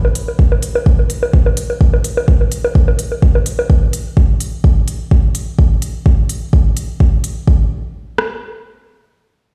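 Minimal techno at 127 BPM in 4/4, this hypnotic, sparse passage from a longer piece rides a light swing on the 16ths, with tape-warm analog bongos treated with delay opening the track and dropping out at 3.7 seconds. Clicky electronic hi-hats join almost at once, and a minimal click drum kit with a deep kick and rim click sits up front until 8.3 seconds. The drums carry the air of a large room, and the whole mix sounds as if played through a big sound system in a bare stone space, with little reverb.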